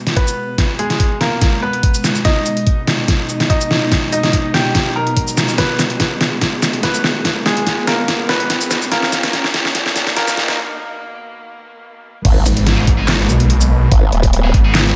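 A snarling, detuned saw bass, growling with distortion and overdrive, crashes in up front at 12.5 seconds in this aggressive, heavy wobble dubstep excerpt, set at 144 BPM in a half-time 4/4 feel in G# minor. Before that drop, a dark chamber string section holds bowed, sustained chords with light vibrato, pumping from sidechain compression beneath a low-pass filter sweep. Meanwhile a bright, brilliant grand piano carries the melody with dub echo and audible action noise. A knocking, layered electronic kick joins a dubstep kit of deep snare, handclaps, hi-hat, shaker and crash cymbal, re-recorded in a large room and placed up front, to drive the build-up and its drum fill, with a very quiet riser and impact underneath. After a short break, the drop opens at 12.2 seconds with a chorused, pulse-wave formant-sweep wobble bass alongside the saw bass, while a double-tracked, high-gain guitar adds picked stabs with dub echo in the background, all under a light reverb.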